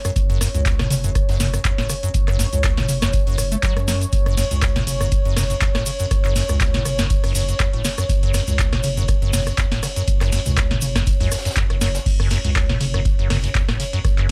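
A swung 4/4 groove at 121 BPM drives this gritty, hypnotic acid house cut in F# minor, taken from a longer piece and sitting in a drop throughout its roughly 14 seconds. The deep, dry electronic kick anchors it from 0.2 s. A booming analog drum machine supplies crisp snare, metallic hats, handclaps, rim clicks, toms, ride and crash, while a very quiet, saturated breakbeat kit with a high-tuned snare and rolled-off top adds a dusky layer beneath. A grainy tube shaker rattles in the background until 12.0 s. The squelchy, hollow square-wave acid bass carries the riff with a resonant filter sweep and lush chorus. A thick, saturated sine sub bass enters at 0.2 s, and both basses carry sidechain pumping. Above them a moody, detuned sawtooth pad holds slow-attack chords with chorus and sidechain pumping, and light reverb gives the mix a little air.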